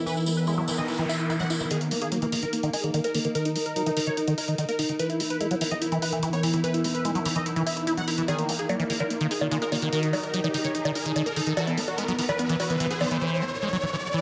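Psychedelic trance cut from a longer piece, driving and alien, with a thick, detuned unison lead carrying the melody through phaser and delay over a squelchy liquid acid bass riff whose filter sweeps through the build-up from 1.7 seconds. A swarming, tense drone and a warbling, nostalgic lo-fi pad sit in the background, while a jingly, dry tambourine opens the track before electronic hi-hat and bongos take over at 1.7 seconds. A very quiet, juicy blip pluck adds a second line in brief bursts, and an electronic noise sweep and riser push the energy upward, all set in a moderate plate reverb.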